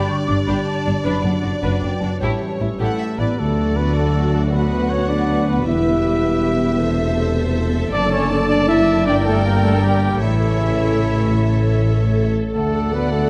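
A heroic, triumphant cinematic cue at 105 BPM in a straight 12/8, cut from a longer piece, settling into D major from 3.4 s. Rich, focused violins carry the vibrato-laden melody high in their range. Darker, woody violins and a pure, very quiet flute ensemble add second lines, while smooth violas fill in the background and a ringing concert harp spins soft fingerpicked arpeggios. Close cellos and clear, even double basses anchor the bass from 0.3 s, and bright, tight trombones hold chords in the background. At 2.8 s mellow French horns join with sustained chords and a lone trumpet adds clear stabs with light vibrato, all set in a dark, warm scoring-stage sound with moderate reverb.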